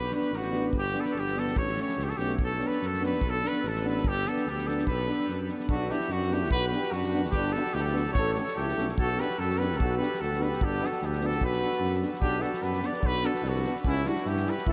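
Balkan folk brass band music in a fiery, restless mood, cut from a longer piece and bathed in a huge ambient reverb that suggests a vast, echoing space. A clear, up-front trumpet carries the melody over a mellow tuba bass with light vibrato, while a French horn and a warm, close-miked trombone sit in the background and a loose acoustic drum kit with a fat snare, tight kick and rolled-off top drives the 2/4 pulse. At 5.7 s a distant, roomy flugelhorn joins with a second line, and a diminished chord arrives at 13.8 s.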